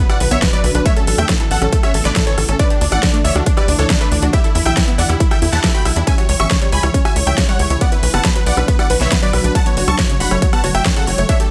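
A punchy, up-front electronic kick drives this euphoric, soaring slice of uplifting trance at 138 BPM in B minor, cut from a longer piece. Beneath it, a tight, nasal sequencer bass built from sawtooth and square waves pumps with the sidechain, also placed up front, while a big-room dance kit layers a huge snare, metallic hi-hats, ride cymbal and rim clicks. The lead melody sits in a detuned supersaw stab with tape echo, joined by a clear, intimate grand piano playing a second line, its action noise and long sustain heard in the background. A lush unison pluck spins arpeggios behind them, and a shimmering, ethereal pad with octave-up shimmer, chorus, phaser and a dark edge holds sustained chords underneath. A barely audible sub drop marks the impact in the opening 0.9 seconds, and the chords move from Bm through Aadd9, Dsus2, Em and C#m back to Bm before resting on F#m7 at 9.6 seconds, all in a dry mix with little reverb.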